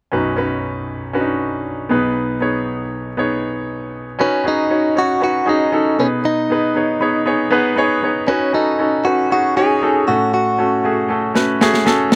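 A brilliant concert grand piano opens this uplifting, piano-driven pop excerpt, its deep bass and short sustain sitting up front with a slapback echo as it moves through Badd9 and G#m/B chords. At 4.2 seconds a clean, picked electric guitar, recorded direct with a compressed, scooped tone and the same slapback echo, takes the melody, and the piano adds a fill of its own from 6.8 to 8.3 seconds. An airy, medium-tuned acoustic snare arrives at 11.4 seconds for a closing drum fill, all in a dry, close sound with little reverb.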